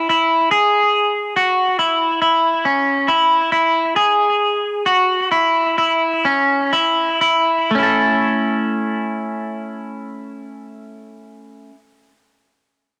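A bright, twangy clean electric guitar, picked and up front with lush chorus, analog delay and a cassette-tape tint in a moderate studio reverb, carries this ethereal, floating dream pop fragment in A major at 60-71 BPM in straight 4/4, easing through C#m, Eadd9 and back to C#m while slowing down from 0.5 to 7.7 seconds before settling on A, all captured as a home recording on cassette and cut from a longer piece.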